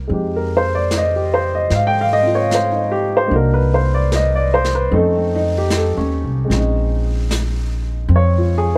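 A baby grand piano, natural and up front, opens this wistful, intimate jazz ballad in F minor alongside a woody, thumpy pizzicato upright bass, with a brushed drum kit on snare and hi-hat joining at 0.1 seconds. At a slow 75 BPM with a gentle swing, the piano comps through Fm7, Cm7b5, F7b13 and Bbm11 while the brushes sit softly in the background. Light reverb gives this short passage, cut from a longer piece, the close feel of a studio room.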